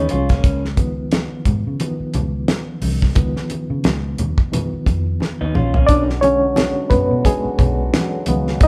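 Smooth, warm 1970s-style soul with a gentle swing, cut from a longer piece and played live in one lightly reverberant room, where a reedy, lightly overdriven electric piano with fast tremolo solos throughout over a dark, foam-muted, round fingered bass, a dry, up-front drum kit with a fat snare and tight kick that plays a fill at 5.2 seconds, low-tuned congas ringing in the background, and brief, slightly broken-up, lo-fi guitar riffs, before a mellow French horn section enters at 5.9 seconds with sustained chords.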